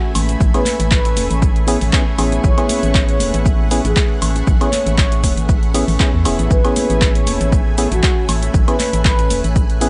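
Sunny and relaxed, this deep house excerpt at 118 BPM in A major rests on a single Amaj9 chord, with a round, horn-like synth lead carrying the melody over a moody ambient pad, a blurred granular cloud pad and shimmering vintage string-machine violins, while a hollow, organ-like FM bass and dark percussive organ stabs pump against an overdriven electronic kick up front, joined by a tape-colored analog drum machine with handclaps, cabasa and woodblock, a gritty sampler-style kit with snare and shaker, and soft, ringing congas and bongos; the congas and bongos enter at about 0.1 seconds, the bass and both drum kits at 0.2, the kick at 0.4 and the organ stabs at 0.5.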